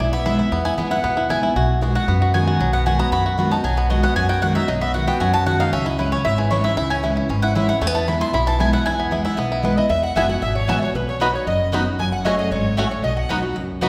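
A lively, driving bluegrass excerpt opens with a round, double-stringed mandolin taking a solo of picked stabs over bright, full-bodied dreadnought guitar accompaniment, twangy up-front banjo arpeggios and thumpy, woody pizzicato upright bass; at 9.6 seconds a nasal, metallic slide resonator guitar carries the melody, shadowed by a smooth, earthy bowed fiddle line, all set in the wet reverb of a church or concert hall.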